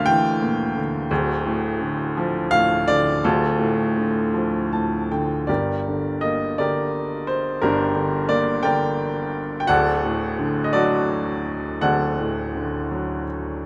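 Heard up close with little reverb and audible action noise, this intimate, clear excerpt of lyrical classical solo piano unfolds in a slow, rubato 6/8, its baby grand ringing with long sustain from deep bass to upper register in a wistful, melancholic mood, with a brief fill at 4.3 seconds leading into a second passage in G harmonic minor from 5.5 seconds.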